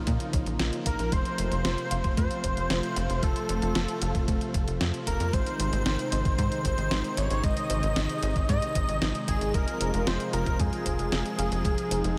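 A straight 4/4 groove at 114 BPM drives this moody, nostalgic synthwave excerpt, built on a thumpy, overdriven electronic kick, a fat, tape-toned drum machine snare with hi-hat, and a punchy sawtooth sequencer bass with tube saturation. The bass and a smooth, chorused analog pad with 12-bit sampler grit both pump from sidechain compression under Bbm, F, Ab and Fm chords. A thick, detuned unison lead with vibrato and analog delay carries the melody, joined in the background by an airy, sine-based second lead, while a very quiet, lo-fi pulse-wave pluck plays arpeggios, all in a dreamy mix soaked in huge ambient reverb.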